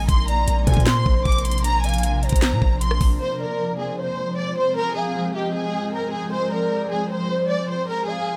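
A dark, nasal violin section with lush vibrato sings up front over a cloudy granular pad and a deep sine 808 bass as this brooding, hard-hitting half-time trap cut at 154 BPM in F dorian opens, joined by a knocking kick, sharp snare and metallic hats, a brief edgy sync-sweep polysynth stab at 0.7 seconds and a mellow gliding portamento lead with chorus and tape echo in the background, before the drums and bass drop out near 3.2 seconds as the harmony shifts from Bbadd9 to Fmadd9 and the strings, pad and lead carry on in light reverb.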